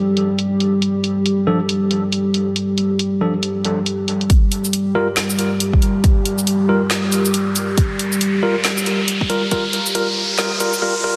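A lush hall reverb and a dense, heavily limited modern master with lossy compression artefacts frame this cavernous, meditative deep dubstep excerpt in G minor at 138 BPM, with a swung, half-time feel. A detuned, wave-folded analog pad with chorus holds dark sustained chords from the start, joined by a deep house kit with a woody snare, muffled hats, handclaps and shaker, while a clean tine electric piano plays stabs through a dub echo. At 4.3 seconds a layered electronic kick arrives up front on a Gm7 as a filter sweep and the build-up begin, and an electronic riser joins at 6.2 seconds.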